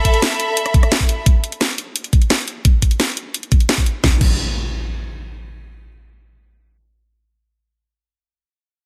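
Dark technical drum and bass at 173 BPM in a straight 4/4, this short excerpt cut from a longer piece feels aggressive and tense. A knocking electronic kick drum and a layered drum and bass kit with a cracking snare, crash cymbal, hi-hat and rim click sit up front from the start, driving through to 4.3 seconds. A clear, biting studio string section, bowed as an ensemble with light vibrato and a smooth top, opens over an Asus2 chord and pumps with sidechain compression before dropping out at 1.3 seconds. At 4.0 seconds the harmony falls away and an up-front electronic impact enters, ringing on alone after the drums stop and carrying through to 7.8 seconds. Light reverb and digital ambience frame a dense, heavily limited modern master that carries some lossy compression artefacts.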